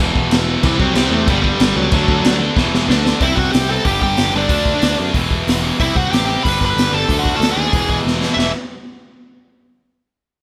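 A driving, straight 4/4 punk rock pulse, energetic and rowdy, comes from a raw garage drum kit that sits up front, with a punchy kick, a high-tuned snare, hi-hat and crash cymbal in a bright stone room, plus fills at 2.6 and 8.0 seconds. Two bright, overdriven electric guitars churn out the riff in the background over a growly, foam-muted picked bass, cycling through E5, C, G5 and D. From 0.6 seconds a dark, smooth overdriven lead guitar carries the melody up front, all with little reverb, in a short cut from a longer piece.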